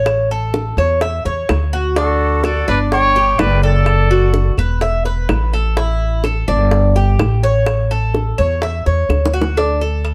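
A dark, lightly reverberant mix carries this danceable Cuban son and guajira excerpt at 126 BPM in D major, where a bright, metallic Cuban tres plays arpeggios on double strings up front over a thumpy, gut-strung pizzicato upright bass, tight high-tuned bongos and cowbell struck with hard hands, and woody claves in the background, while a warm, vintage trumpet with scooped notes carries the melody and a breathy jazz flute with crisp chiff adds a second line from 2.0 to 4.5 s, before a drum fill arrives at 9.1 s.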